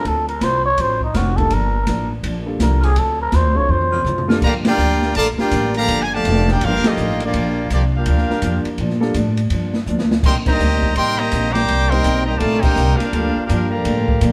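A cup-muted trumpet opens this big band swing excerpt with a veiled, breathy, growling solo, then gives way at 4.4 seconds to a clear trumpet section that carries the melody, supported by a mellow, tight trombone section on a second line. Behind the solo, a softly attacked saxophone section holds sustained chords in the background from 1.1 seconds. Throughout, a woody, thumpy pizzicato upright bass on gut strings anchors a minor-key progression. An open jazz kit with dark cymbals and a boomy kick swings along and drops in short fills before the horns arrive and again later. A vintage grand piano with audible action noise and a full-bodied picked acoustic guitar sit quietly in the background. The whole band plays live in a stone room with moderate reverb, and full-band accents punctuate the brass passage, giving the piece a swinging, brassy mood.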